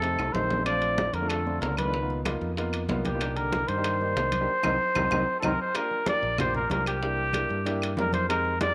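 A short cut from a longer Afro-Cuban jazz piece opens with a breathy, vintage-toned trumpet carrying the melody up front, shadowed by a very quiet, mellow trombone with vibrato, a soft attack and scooped notes on a second line. Beneath them, a concert grand piano with deep bass plays chords in C minor such as F9, Bbmaj7 and Cm9, while a fingered electric bass sounds direct and warm. The percussion brings ringing congas, tight, high-tuned bongos kept very quiet, metal-shell timbales and woody claves in the background. A drum fill comes in at 0.2 s, a band accent arrives at 4.5 s with another drum fill following from 4.8 s, and the trombone stops at 5.5 s. The tempo is a brisk 188 BPM in straight 4/4, the mood is sultry and sophisticated, and a wet spring reverb with small-room ambience gives the sound an intimate character.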